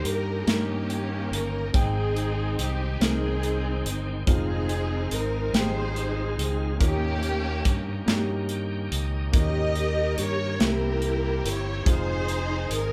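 A slow 6/8 gospel groove at 47 BPM, carried by an airy, polished acoustic drum kit with tight kick, medium-tuned snare and hi-hat, and a punchy, bright fingered electric bass run through an envelope filter, frames this reverent, soulful passage cut from a longer piece, where an expressive bowed string ensemble sings the up-front melody with vibrato and portamento over smooth, vintage-toned grand piano accompaniment and a full, shouting tonewheel organ held in the background with fast rotary speaker and light overdrive, stepping out for a fill from 8.1 to 9.3 seconds, as the harmony moves from Eb7 through Abmaj7, Fm7, Eb7 again and C7 before settling on Fm7, in a live-room sound with moderate studio reverb.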